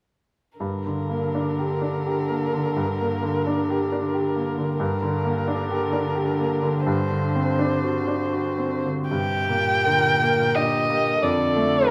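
A veiled, con sordino violin carries the melody up front, close and rich with vibrato, in this solemn, yearning slow romantic movement for piano quartet, cut from a longer piece in G minor and 3/4 with a rubato pulse of 73-91 BPM. A clear concert grand with deep bass plays the accompaniment, while a dark, muted cello holds a soft-edged second line in the background. At 9.1 s a second violin joins with portamento and a smooth top, all within a moderate recital hall reverb.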